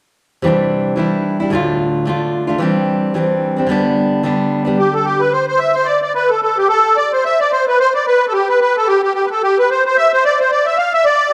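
Celtic folk excerpt, cheerful and lively at a brisk 221 BPM in 4/4 with a swung eighth-note feel in C major. A full-bodied, fingerpicked jumbo steel-string acoustic guitar opens alone at 0.4 seconds, up front with audible finger squeak, moving through Cadd9, Dm, Cadd9/E and G/D. At 4.8 seconds a reedy, shimmering musette accordion enters with the melody, dark yet smooth and placed up front, all within the generous bloom of a recital hall's reverb.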